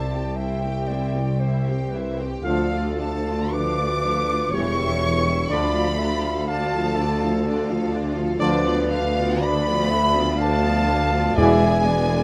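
A warm, vibrato-laden violin section carries the melody in this melancholic, yearning classical passage, a short piece of a longer work, moving at 60 BPM in 3/4 with uneven, rubato beats. Alongside it a dark clarinet and an airy, hollow concert flute weave second lines, while a second violin group sits in the background and a very quiet viola section fills in the accompaniment. The low end rests on a mellow tuba, a rich cello section and a distant double bass section, the bowed cellos and basses sounding lush and smooth. From 2.4 seconds a mellow French horn section holds sustained chords as a solo trumpet adds stabs, joined a moment later by a tight, vintage-toned trombone section, and the harmony drifts from C through D minor and diminished colours before settling on E7. Timpani struck with hard mallets on calf heads enter at 11.4 seconds, close and dry, while the whole orchestra sits in a moderate recital hall reverb.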